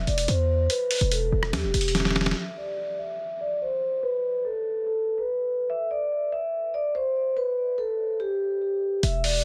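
Dry, dense and heavily limited, this dark, brooding half-time trap excerpt sets a mellow, ringing soft-mallet vibraphone melody, dulled by a low-pass filter and treated with tape echo, over a punchy, heavy 808 bass and a gritty, compressed sampler-style kit of snaps, hi-hat, rim click and snare, whose fill near 1.9 seconds gives way to the vibraphone alone under a filter sweep from 2.4 seconds until bass and drums return at 9.0 seconds.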